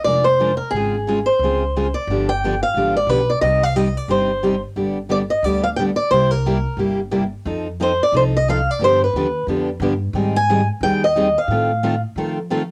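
Acoustic string swing in the jazz manouche style, this short excerpt cut from a longer piece moves at a brisk 178 BPM in 4/4 with a swung eighth-note feel and a virtuosic, bittersweet mood. A picked swing-style acoustic guitar carries the melody from Ab4 up to Ab5, its dark, boxy tone sitting up front with audible finger squeak and a cassette-tape grain. Beneath it, a second picked guitar, a bright steel-string with fresh strings and an auditorium character, supplies the accompaniment, also up front, with finger squeaks and the same cassette coloring. A pizzicato upright bass with gut strings anchors the low end from F1 to F3, thumpy and woody, sitting lower in the mix. The harmony winds through seventh chords such as Bb7, G7, C7 and F7, touching Dbmaj7/Ab and Abmaj7 before settling on F7/A. The excerpt has the intimate feel of a home cassette recording with light reverb, and the melody guitar drops out at 12.0 seconds while the bass carries on to 12.7 seconds.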